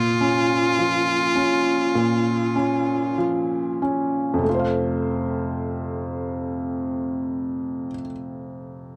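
A clear, focused cello, bowed with vibrato and set up front, sings the melody until 3.2 s in this tender, emotional pop fragment, over a soft, felt-muted upright piano whose mellow, intimate tone and audible action noise carry the accompaniment through to 9.0 s, as the pulse slows across the opening Bbm passage before settling onto F at 4.5 s, all captured in a dry, close 1970s-style studio sound.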